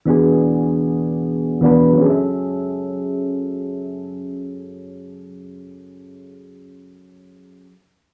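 This hip hop fragment drifts in free time in F# minor, tuned slightly flat to A4 = 436 Hz, with a melancholic, nostalgic mood. A single soft synth keys part, voiced like an electric piano, sits up front from 0.1 to 7.7 seconds, its round, mellow tone carrying a sub octave and a fast attack that decays, coloured by chorus, phaser, a low-pass filter and a cassette-tape haze. The harmony moves from E7 to F#m7 at 2.0 seconds in a small, moderately reverberant room, captured as a home recording on cassette.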